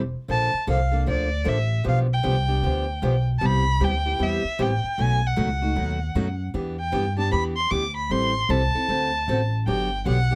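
Opening at 0.0 s with a woody pizzicato upright bass, this bittersweet, swinging jazz manouche fragment at 154 BPM brings in at 0.3 s a dark, smooth bowed violin melody with vibrato and a picked steel-string acoustic guitar accompaniment whose finger squeaks come through close, detailed microphones and light reverb, all three parts up front as the chords move from Bbmaj7 through G7, Cmaj7 and B7 toward a closing Gmaj7.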